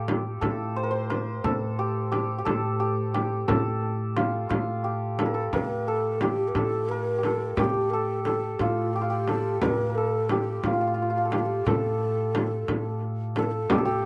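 Persian modal ensemble music in 6/8, melancholic and soulful, in which a bright, shimmering santur with slapback echo carries the melody up front over a woody, growly pizzicato upright bass on a low A and a deep, saturated frame drum, joined at 5.5 s by a breathy, hollow low ney with vibrato and its own slapback echo on a second line, the whole performance captured dry outdoors.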